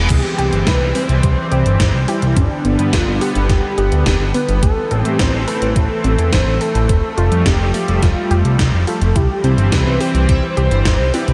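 Cinematic and driving, this synthwave excerpt moves at 106 BPM in a straight 4/4 over a C, G, Am, Fadd9 progression, with a fat, up-front analog bass and a thumpy, overdriven electronic kick anchoring a gated 80s digital drum machine of snare, hi-hat and crash, treated with gated reverb and a gated-reverb snare. A shimmering chorused pulse-width pad pumps under sidechain while a thick, dark unison lead with vibrato sings the melody through a diffuse ambient delay, and a very quiet, warbling, lo-fi pluck traces arpeggios beneath. A faint reverse cymbal and downlifter sweep through the first 4.6 seconds, a glossy chorused polysynth adds background stabs with phaser and delay from 9.4 seconds, and the whole dreamy mix is soaked in a huge ambient reverb.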